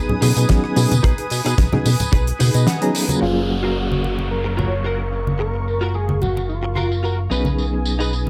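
A glossy, up-front chorused synth bass drives this groovy, feel-good nu-disco excerpt, joined by a lush, detuned, sidechain-pumped unison pad, a clean direct-recorded electric guitar riff with dub echo and a fill, a reedy electric piano with tremolo, bright low-tuned congas, a damped 70s drum kit with a fat snare and filtered hats and tambourine, and a tight, dry kick drum in the opening seconds; from 3.2 seconds, as the harmony shifts to F#maj7, a thick sawtooth unison lead with vibrato arrives over a faint electronic downlifter while a filter sweep works over the drums.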